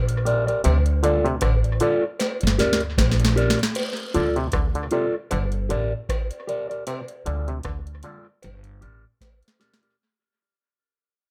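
Roots reggae in G minor at 77 BPM, this hypnotic, laid-back excerpt from a longer piece sways on a light 16th-note swing over alternating Gm and Dm chords, with a fade-out from 3.8 seconds. A woody, thumpy upright bass with tube saturation sits up front beside a booming analog drum machine whose deep kick, crisp snare, rim click and metallic hats carry dub echo and play fills at 2.2 and 9.2 seconds. A mellow, clean electric guitar colored by phaser and dub echo, a twangy muted clav arpeggiating through auto-wah, and a distant cowbell and jawbone-type rattle with tube shaker and group handclap complete the arrangement under light reverb.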